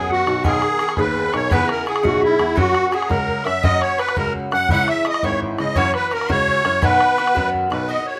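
A straight 6/8 Celtic jig at 113 BPM in B major gives this lively, bright folk excerpt its lift, with a shimmering, up-front musette accordion carrying the melody, an airy whistle with vibrato adding a higher second line, a metallic, picked Irish bouzouki with double strings, a worn, long-sustaining baby grand piano on bass, and a tight, damped bodhran, all set in moderate studio reverb, with the whistle stopping at 7.5 seconds.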